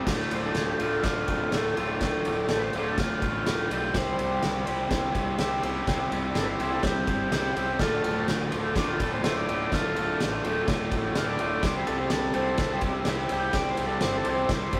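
Garage rock with a raw, menacing edge, this rough rehearsal-room clip sets a bright, overdriven, double-tracked guitar riff up front over a punchy fuzz bass and an oversized, low-tuned drum kit with dark cymbals and a fat snare, while a buzzy vintage combo organ takes a spring-reverbed solo from 0.3 seconds as the chords swing between D minor and C in a stone room.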